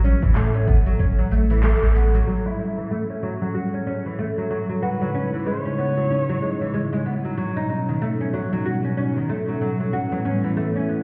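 The rhythm is a swung organic downtempo groove at 94 BPM in 4/4, built from a deep house kit of overdriven handclaps, metallic hi-hats and shaker, a deep, tape-toned electronic kick, and a round, up-front sine sub bass with tube saturation and sidechain pumping. After a short band accent, the drums and bass fall away at 2.2 seconds. Meanwhile a woody, plectrum-plucked fretless oud with doubled strings plays arpeggios in F# dorian throughout, softened by a low-pass filter that sweeps across the later section and trailed by delay. From 2.3 seconds a detuned sawtooth analog pad holds smooth, warbling chords through F#m, C#m7, B and A, carrying chorus, 12-bit sampler grit, its own filter sweep and sidechain pumping. At 4.8 seconds a dark, bowed kamancheh adds a brief melody with vibrato and portamento, gritty and echoed, over a meditative, warm mood. The whole fragment sounds muffled as if heard through a wall, set in a stone room and a moderate concert hall reverb.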